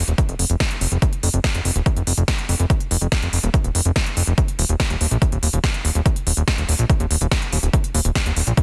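Alien and hypnotic, this short psychedelic trance cut from a longer piece drives at 143 BPM in straight 4/4, built on a fat analog bass of detuned sawtooth and square tones with a tube-saturated, plucky filter bite, joined at 0.1 seconds by a big-room dance kit of crisp hats and a punchy snare and at 0.2 seconds by a punchy, layered electronic kick, all up front in a dry, dense, heavily limited modern master.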